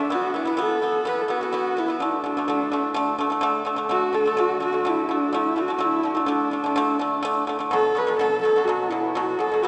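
A straight 4/4 pulse at 126 BPM drives this vast, galloping Mongolian folk excerpt in D gong mode, tuned to A4 = 435 Hz. Up front, a single husky horsehead fiddle carries the melody with bowed vibrato, soft attacks and expressive portamento, while a dry, percussive pipa played with fingerpicks supplies low arpeggios. Both play throughout, and the music moves into a new section at 3.9 seconds, all within the long, wet reverb of a cathedral-like hall.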